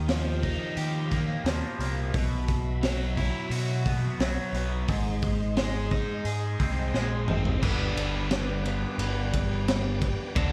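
A saturated, gritty breakbeat kit sits up front with a punchy kick, high-tuned snare and dark cymbals, rolling into a drum fill from 6.9 to 7.6 seconds in this hazy, kaleidoscopic psychedelic rock excerpt. A double-tracked, overdriven guitar riff shimmers through a phaser over a round, amped picked bass. Meanwhile, a reedy tonewheel organ with key click, slow rotary speaker and chorus vibrato holds sustained chords in the background of an echo-heavy small room, the harmony moving to a new section at 7.6 seconds.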